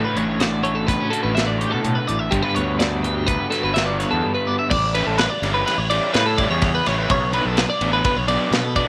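A bright, clean twelve-string electric guitar leads this playful math rock and midwest emo excerpt, its compressed, picked arpeggios sitting up front in a high register. A second twelve-string guitar supports it with a mellower, tremolo-treated accompaniment that drops out at 7.1 s, while a crunchy, double-tracked overdriven guitar plays a riff beneath. A growly fuzz bass with overdrive adds a thick, up-front low end, and an acoustic studio drum kit enters at 0.2 s with a punchy kick, medium-tuned snare, hi-hat, ride and crash, its top end rolled off. The music moves in 5/4 with a straight feel, shifting from A to Gmaj7 before a second passage at 4.7 s turns to A7sus4 and then Bm7. Light reverb and a small-room ambience give the cheerful, bright ensemble a close, tight sound.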